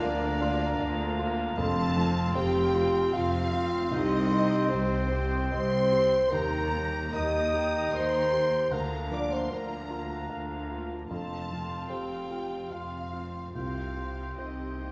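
Dark, distant French horns hold sustained chords at the front of this hopeful, tender orchestral film-score excerpt in Bb major, moving in a rubato 3/4 at 76 BPM while a lush violin section sings the melody with soft-attack vibrato and a second, shadowed violin section plays a supporting line alongside it. Around them a mellow flute section, a roomy cor anglais and a clear clarinet in the background add supporting lines, over a felt-muted upright piano, a very quiet viola section, a ringing concert harp playing arpeggios, and bowed cellos and double basses carrying the bass. Very quiet timpani enter briefly at 1.6 and 11.1 seconds, and the ensemble sits in a generous scoring-stage reverb.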